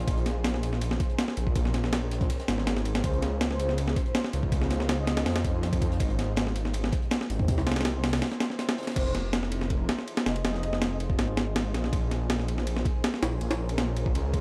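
Drum and bass with a jungle edge, frenetic yet atmospheric, built on a compressed, up-front sampler-style breakbeat kit with a thumpy kick, high-tuned snare, crash and ride, shadowed until 9.0 s by a very quiet, dark, crunchy second break of hi-hat and snare. A thick, menacing detuned saw bass sits forward in the mix, while a cloudy granular pad drifts through lush minor and major-seventh chords in the background with its own reverb. A breathy, flute-like lead with chorus, vibrato and dub echo surfaces briefly from 3.0 s and again at 9.0 s, all captured in a gritty, small-room sound.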